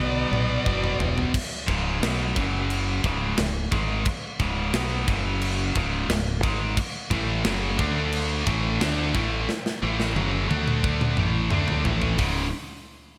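Heavy metal at 88 BPM in C# phrygian, aggressive and relentless, opens with a bright, slapback- and tape-echoed high-gain lead melody and a dark, very quiet bluesy overdriven second line that both stop at 0.9 seconds, while a scooped, up-front distorted rhythm guitar riffs throughout, a second distorted guitar sits in the background and drops out at 1.3 seconds before returning at 7.1, a growling overdriven fingered bass drives the low end, and a tight metal kit with bright cymbals and a tight kick adds fills, all inside a big arena sound with lush hall reverb.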